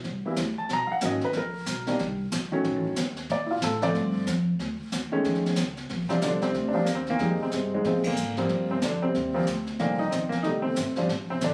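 Upright bass and a brushed jazz kit open this relaxed, sophisticated excerpt of a jazz piano trio, swinging at 185 BPM in 4/4 and in B-flat major. The upright piano enters at 0.3 seconds, carrying the melody with a warm, polished, up-front tone and short sustain, and it is featured as soloist through the first 5.9 seconds. The pizzicato bass sounds warm and woody, with steel strings, while the drums pair a high-tuned snare and boomy kick with dark cymbals, brushed snare and hi-hat in a small, natural-sounding room. The harmony moves through colourful extended chords such as Bmaj7, B9 and an F7alt before settling on Bb69, then travels through Fm7, Eb6 and Cm11 toward F9. The whole band hits an accent at 8.0 seconds. The recording has light reverb, studio ambience and compression, with the intimate character of a phone capturing the room.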